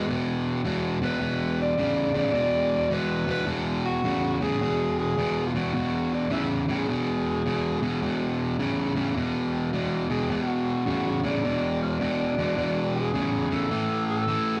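A bright, overdriven, picked cranked stack guitar sits up front with a gritty riff in this swaggering swung blues at 106 BPM in E mixolydian, while a distant, roomy tenor saxophone with vibrato and subtone carries a jazz-style melody, taking a solo over the first 4.6 seconds, across E5 and A5 chords, all in a rough, tube-saturated rehearsal-room recording with moderate studio reverb.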